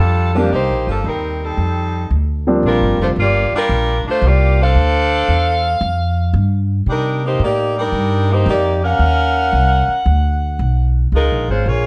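A joyful, brassy big band swing excerpt at 113 BPM in Bb major opens with a saxophone section carrying the melody over a woody, thumpy pizzicato upright bass, the horns voiced with light vibrato and soft attack in a roomy, distant blend. A concert grand piano with deep bass adds brief accompaniment from 0.4 to 3.1 seconds, while the saxes and bass carry on through a harmonic turn that moves from Bb6 and Cm7 toward richer colors like Ebm9 and a closing Db69. Light reverb frames the swung eighth-note feel.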